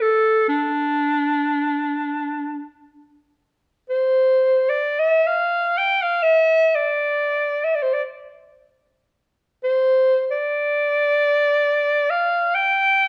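Melancholic and soulful, this Turkish makam piece unfolds in free time in D makam huseyni, with a single clarinet carrying the whole performance as a solo from 0.0 to 13.1 s. The clarinet has a bright tone shaded with vibrato and scooped notes, and its phrasing leans toward a jazz style. It ranges from D4 up to G5. Though it sits up front, the instrument also sounds distant and roomy, surrounded by a moderate recital hall reverb with a 1.3 s decay. The playing falls into two passages built on the same material, the second beginning at 3.3 s, and the recording is cut from a longer piece.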